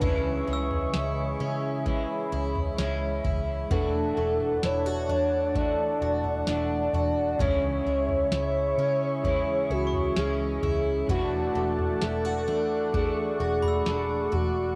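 This home cassette recording has a hazy, tape-worn sound in a small booth-like room, and the passage is cut from a longer dream pop piece that feels dreamy and floating at a slow 65 BPM in 4/4. A warbling, nostalgic synth lead carries the melody with vibrato, portamento and a mellow, soft-edged tone, floating over a smooth, detuned analog pad that sustains the chords. Beneath them, a picked twelve-string acoustic guitar spins shimmering, octave-doubled arpeggios through analog delay, while a clean electric guitar adds quiet accompaniment with harmonic tremolo and lush chorus. A dark, round, foam-muted electric bass and a booming analog drum machine with a deep kick, tonal snare and toms anchor the groove. A bright, sparkling glockenspiel struck with brass mallets rings faintly in the background from 0.5 to 2.4 seconds and returns at 9.9 seconds, as the harmony sways between C#m and D/E.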